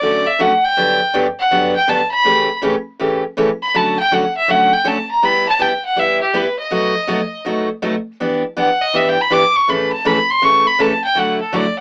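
Country excerpt with a cheerful, down-home swing, where a clear, biting bowed fiddle with light vibrato takes the melody as a solo throughout, over a bright, full-bodied picked dreadnought acoustic guitar, both up front in a booth with moderate ambience and an AM radio sound, moving through chords like Dmaj7, B7 and Em7 before landing on Dadd9 at 11.2 seconds.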